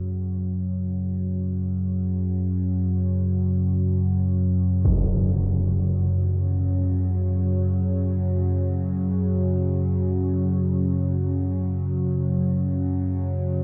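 In free time, this dark ambient drone excerpt sounds cavernous and desolate, tuned to A4 = 438 Hz and sitting on an F#5 chord throughout. A deep, ominous rumbling drone with a nasal, detuned edge and its own reverb holds the low end up front, with a filter sweep across its full 13.6 seconds. Above it an evolving, wave-folded resonant pad fades in with chorus and phaser on sustained chords, and a huge, bright impact with a low-pass filter lands at 4.8 seconds, all steeped in a huge reverb and the warbling pitch drift of worn cassette tape.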